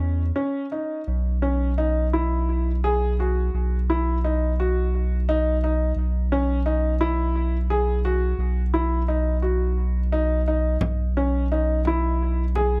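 Restless and shimmering, this short cut from a longer contemporary chamber piece moves in 7/8 at 172 BPM in B major, with a clear, natural concert grand piano spinning up-front arpeggios through tape echo over a round, sine-like sub bass, a brief break at 0.4 seconds, and a close, dry frame drum joining at 10.8 seconds as the harmony drops away, all in a dark production with light reverb.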